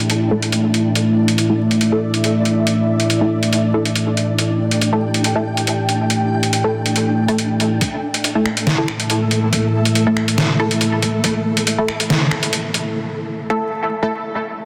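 This brooding, cavernous deep dubstep excerpt moves at 140 BPM in a half-time feel, with a slight swing on the sixteenths. Up front, a gritty, pitched-down trip hop drum kit with a tape-warm, sampler-style character lays down finger snaps, hi-hat and a medium-tuned snare, while a compressed, thumpy electronic kick, high-pass filtered and set in the background, joins at 7.8 seconds for the build-up. A dark, evolving analog pad with a sub octave and chorus holds sustained chords near the front, its filter sweeping throughout. Muted, mellow sawtooth chord stabs with a fast pluck and short decay are swept by a filter in the opening half and colored by phaser, analog chorus and dub echo. A grainy, flickering granular texture with a slow attack and long release shimmers beneath. The whole sits in a huge ambient reverb with vinyl crackle and a dense, heavily limited master, and a break begins at 13.0 seconds as most parts fall away.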